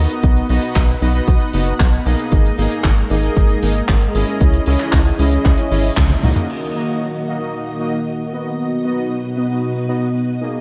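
A punchy, up-front sawtooth sequencer bass drives this nostalgic, bittersweet italo disco excerpt alongside a layered electronic kick and a dry, damped 70s kit of handclaps, hi-hat, toms and dark crash cymbal, while lush string-machine chords with ensemble chorus and fat, detuned analog synth brass stabs with vibrato float in a dark production with light studio reverb, the drums closing with a fill and band accent at 6.0 s before strings and brass carry on alone until 10.6 s.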